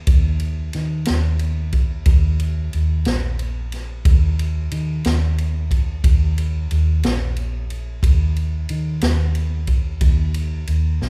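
Slow blues in 12/8 at 60 BPM, counted in dotted quarters, with a gritty, laid-back mood and a straight feel, tuned to A4 = 439 Hz. This 11.1-second excerpt, cut from a longer piece, pairs two up-front parts: a vintage muted fingered electric bass and a swinging big-band drum kit. The bass starts at 0.0 s and moves between Bb1 and Eb3, its amped, foam-muted tone dark and round. The drums come in at 0.1 s with a punchy kick, a medium-tuned snare and ride cymbal, sounding acoustic and natural in a studio room. A moderate reverb with a 1.8-second decay gives the recording the space of a church or concert hall.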